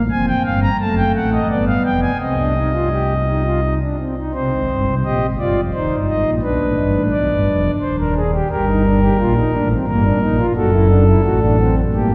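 A lone pipe organ on a principal stop opens this contemplative, serious passage, cut from a longer baroque-style three-part fugue in 3/4, its smooth, romantic voicing sitting up front across a range from Eb1 to Bb5. The harmony moves through minor, dominant and diminished chords, with a new section arriving at 4.3 seconds and running to 12.1 seconds. A wet cathedral reverb lasting 4.7 seconds surrounds the playing, and the room is heard from further back.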